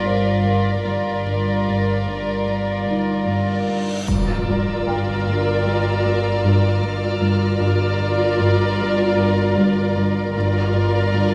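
A rich, softly bowed violin section holds a sul tasto melody on D5 over a second violin line, a cello riff, a dark cello and double bass foundation, a faint felt-muted upright piano with audible action noise and a distant, floating high violin texture in this uneasy 76 BPM suspense film-score fragment, where a huge, bright reverse cymbal rises from 3.6 seconds into an impact at 4.1 seconds, as a distant viola section enters and a dry triangle sounds until 5.6 seconds, all within a moderate scoring-stage reverb.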